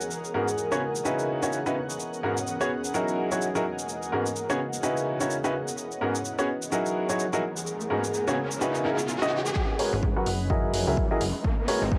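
A cloudy granular pad and overdriven electronic cabasa and hi-hat open this soulful, bittersweet piano house excerpt with a cassette-tape grit. A bright, up-front baby grand piano riff joins at 0.3 seconds, pumping with the pad and trailing analog delay over rich extended chords. An electronic riser builds from 7.0 seconds, and at 9.6 seconds a punchy, tape-warm kick arrives as a filter sweep on the piano drives the build-up, soon joined by a funky, plucky sawtooth bass that also pumps.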